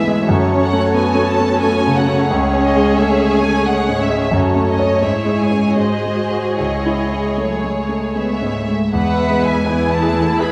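Romantic classical music for piano and orchestra in a rubato triple metre, tragic and passionate, where a clear, up-front concert grand carries the melody over deep bass as lush, vibrato-laden violins sing above and in a second line, dark violas supply accompaniment in the background, and rich cellos and soft-attacked double basses join at 8.9 seconds, all in a moderate concert hall reverb.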